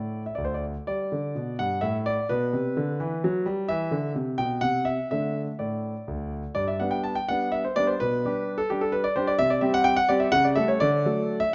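A clear, up-front concert grand piano opens this graceful, elegant excerpt from a classical-period sonatina in G major at 127 BPM in 3/4 with a rubato feel, tuned to A4 = 436 Hz, its deep bass and natural tone heard through close, detailed microphones in a moderate recital hall reverb as a phrase built on G, G/B and C plays twice, the second statement beginning at 6.6 seconds and closing on A7/C# to D.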